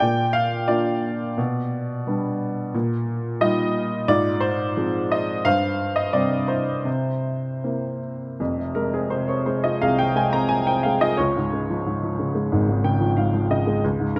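A lyrical classical piece for solo piano, this bittersweet, moody passage is cut from a longer work and moves at a rubato 76 to 92 BPM in 4/4. A warm upright piano carries everything from 0.0 to 14.2 seconds across a range from F1 to Bb5, its worn, woody tone slightly detuned and held up front with long sustain. The opening drifts through Bb, G/B, Ebadd9/Bb, Ab6 and C5/G before a C7 leads into F minor at 8.4 seconds, where a second section settles on Fm and then Db. Near the close the piano adds a brief fill from 12.5 to 13.8 seconds. Close, detailed microphones keep the instrument present, while a moderate concert hall reverb lends the sound a spacious tail.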